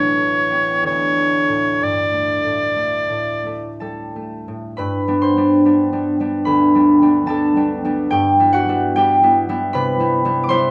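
The rhythm is a free, rubato 4/4 that drifts between 55 and 79 BPM, giving this romantic classical duo for oboe and harp a serene, tender calm. The oboe carries the melody up front in a clear classical voice with light vibrato, singing in a narrow range around C#5 to D5 before falling silent at 3.8 s. The concert harp accompanies throughout, fingerpicked and up front, its bright, ringing tone spanning from deep A1 up to D6. After opening on A9 and D5 harmonies, the music settles into G major at 4.8 s, and the harp carries on alone through a move from G to Cmaj7/G until the cut at 10.7 s. A light reverb gives the pair a gentle sense of space, and the tuning sits slightly high at A4 = 444 Hz.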